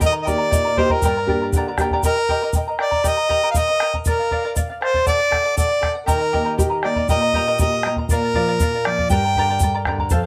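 A straight 2/4 pulse at 119 BPM drives this earthy, melancholic Andean folk excerpt, carried by a round bombo with a small-room sound and a grainy, bright tube shaker that sits low in the mix. Up front, a clear harmonica plays the solo melody in a classical style, set in plate reverb. Beneath it, a fingerpicked charango shimmers with its double strings and some octave-doubled courses. A full-bodied, fingerpicked nylon-string guitar adds a deep classical foundation with audible finger squeak, dropping out at 2.0 seconds and returning at 6.1 seconds. The harmony moves through Eb, Gm, Bb and D, and a light reverb gives the ensemble a touch of space.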